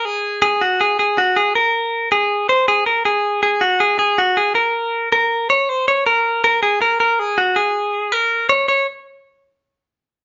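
A clean electric guitar, recorded direct and sitting up front, carries this breezy, bright indie pop excerpt at 160 BPM in a straight 4/4, its picked, compressed tone twangy and bright as it moves between Gb4 and Db5 until 8.9 seconds. The tuning sits slightly low at A4 = 438 Hz, and a moderate large-studio reverb of about 0.9 seconds gives the live-in-one-room sound some space while the top end stays dark, capped at 7.5 kHz. The passage shifts into a new section at 8.7 seconds before the cut at 10.2 seconds.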